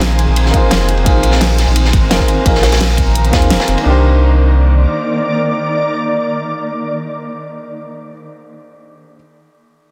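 Dense, heavily limited and lightly reverberant, this rolling, melancholic liquid drum and bass fragment pairs a clear baby grand piano under a filter sweep with a shimmering, detuned ambient pad carrying 12-bit sampler grit and sidechain pumping, a round, tube-saturated sub bass up front, a gritty breakbeat kit with dark cymbals layered with a pop kit's fat snare, and a punchy electronic kick that joins at 0.5 seconds and drops out at 3.4 seconds, before the harmony moves from Bb9sus4 to Cm9 at 3.9 seconds.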